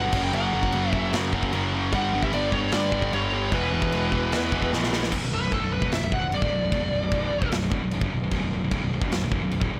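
Opening at 0.0 seconds, this heavy, relentless heavy metal piece at 150 BPM in B minor pairs a bright, up-front high-gain distorted guitar riff and a scooped high-gain guitar in the background with a dark, round, punchy fuzz bass carrying overdrive and transformer saturation, plus an acoustic rock drum kit with crash cymbal, medium-tuned snare and a soft-clipped kick, while a warm, distorted lead guitar with delay plays a melody; after a drum fill at 4.7 seconds the up-front riff guitar drops out and the lead guitar takes a solo from 5.1 seconds over a B minor chord, the whole cut from a longer piece sitting in studio reverb with a blown-out, overdriven recording sound.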